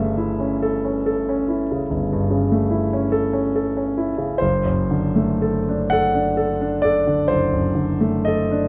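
An intimate, up-front concert grand piano with deep bass and audible action noise carries this brief melancholic, yearning fragment of a romantic classical nocturne for solo piano, moving in a flexible rubato 12/8 from A7/G to D7/F# at 4.4 seconds across a vintage-tinged, smooth tone set in moderate large-studio reverb.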